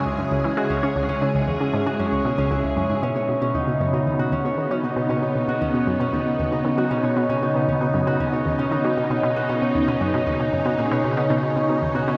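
Ambient, sequencer-driven space music with a hypnotic, expansive mood, in which a swirling, warbling phased string machine holds sustained chords while a ringing concert harp plays arpeggios through delay and a round, nasal, wave-folded analog pluck repeats a riff from 0.1 s, all bathed in a huge, wet reverb as C#m gives way to Badd9 at 3.0 s in this cut from a longer piece.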